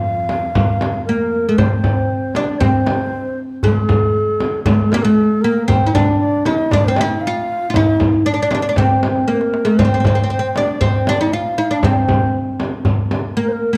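Arabic maqam ensemble music in F maqam rast at 117 BPM, festive and warm, in which a mellow, woody fretless oud carries the melody up front alongside a breathy, bright ney second line, a rich bowed cello section holds an F drone in the background only until 1.6 s, and a clay-shell darbuka and a deep, distant frame drum supply the percussion with a short drum fill at 9.3 s, the ensemble sitting in a moderate recital-hall reverb with a dark production.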